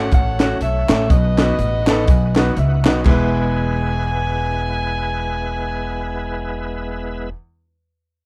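Soulful and hopeful, this short uptempo gospel excerpt swings as a clear saxophone section carries the melody over a polished baby grand piano, a shouting, lightly overdriven tonewheel organ with key click, slow rotary speaker and chorus vibrato holding sustained chords, and a woody, thumpy pizzicato upright bass sitting up front. A punchy fusion drum kit with bright cymbals and a high-tuned snare, joined by distant, hollow group handclaps, drives the opening before dropping away at about 3.2 seconds, just as the harmony moves from F#m through B to land on E. Piano and organ both add fills leading into that arrival, and the sound is dry overall.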